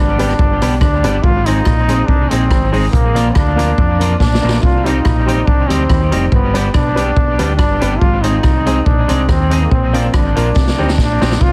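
A brilliant solo trombone with light vibrato carries the melody through this driving, mischievous ska snippet, its tape echo shared by a twangy, slightly broken-up picked electric guitar and a woody, slightly detuned upright piano stabbing with audible action noise in the background, while a round, dark fingered electric bass and an up-front vintage drum kit with a punchy kick and medium-tuned snare drive the groove, the drums adding fills at 4.2 and 10.6 seconds, all wrapped in light reverb and a heavily compressed radio sound.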